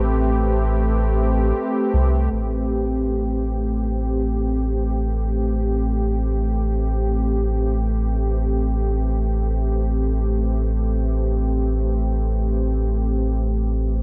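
A round, mellow sub bass with tube saturation sits up front, sustaining deep, soft tones through the full 14 seconds of this ambient dub excerpt from a longer piece, in free time and A minor, tuned to A4 = 439 Hz. Above it, a detuned sawtooth analog pad with a gentle attack and chorus holds smooth, sustained chords, opening on Am9, with a new section beginning at 2.3 seconds. Light reverb gives the deep, spacious mood an airy sense of room.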